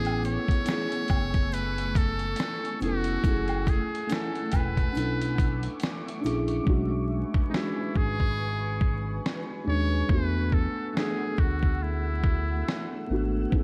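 Through vinyl crackle and light studio reverb, this melancholic, nostalgic lo-fi hip hop excerpt at 70 BPM in B dorian sets a buzzy, breathy metal-muted trumpet melody with scooped notes over a felt-muted upright piano with audible action noise and cassette-tape treatment, a cloudy granular pad, a smooth, dark synth bass and an up-front, gritty sampler-style drum kit with a thumpy kick, fat snare and finger snaps, while woodblock and egg shaker sit in the background until 6.5 s and the hi-hats drop out at 6.7 s.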